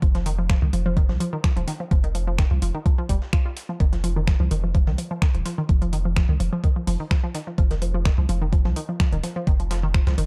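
A dark, digital ambience frames this short cut from a longer minimal techno track, clinical and sparse in mood, running at 127 BPM in 4/4 with a slight swing on the 16ths over an F5 chord. An overdriven electronic kick sits up front with a knocking, layered punch, while a deep sine sub bass, also up front, hits with a pitch-drop attack and sustains beneath it, pumping against the sidechain. A hollow, bouncy square-wave pluck plays the riff with a fast attack and short decay, colored by chorus, phaser, dub echo and the same sidechain pumping. A garage drum kit enters at 0.1 seconds with overdriven finger snaps and metallic hi-hats. Deeper in the background, a gritty, compressed sampler-style soul kit adds overdriven hi-hat and a medium-tuned snare, both thinned by high-pass filtering, and the whole arrangement runs for about 10.3 seconds.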